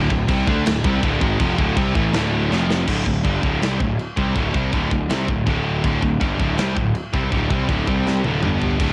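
Heavy metal with an epic, heavy mood, this short cut from a longer piece drives forward in a straight 4/4 feel. Two bright, picked electric guitars carry the riff together, one sitting in the background with plain distortion while the other pushes a high-gain tone. Underneath, a fuzz-laden picked bass sits up front, growly and punchy with overdriven grit. The acoustic drum kit, entering at 0.1 seconds, is tight and mid-forward, with bright china and crash cymbals, a medium-tuned snare, a tight kick and toms, all carrying a cassette tape colour. Fills at 2.5 and 8.1 seconds mark the turns as the opening minor chord gives way to power chords. The whole recording has the feel of a home cassette recording in a small room.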